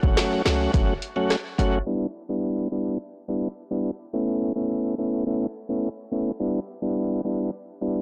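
Blown-out and overdriven under a low-pass haze and light reverb, this bouncy, sultry dancehall excerpt at 106 BPM in E dorian opens with an electronic afro-pop drum kit, with a deep kick, woody snare, metallic hats and 12-bit sampler grit, and a punchy, tight sine 808-style bass, both falling away by 1.8 seconds; at 1.9 seconds a filter sweep begins and the reedy, up-front tonewheel organ, with chorus vibrato, key click and sidechain pumping, carries on alone over Em7 and Aadd9 until 8.0 seconds.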